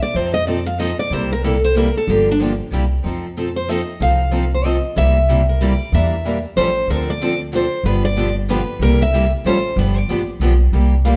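A picked steel-string acoustic guitar leads this playful, lively excerpt of acoustic string swing in the jazz manouche style, its bright, fresh-stringed tone sitting up front with audible finger squeak as it carries the melody and solos from the first moment to the end at 11.2 seconds. Two more picked steel-string acoustic guitars fill in the accompaniment, one bright with a concert character and a touch of squeak, the other boxier with a parlour character. Underneath, a pizzicato upright bass on gut strings gives a woody, dark, thumpy foundation that sits up front in the mix. The tune moves at a brisk 187 BPM in 3/4 with a swung eighth-note feel, centred in C mixolydian and cycling through dominant and minor-seventh chords such as F7, C7, Dm7 and G7, with altered A7 chords adding spice. The players sound together in one room, wrapped in a moderate stone-room reverb that lends the performance a natural, live presence.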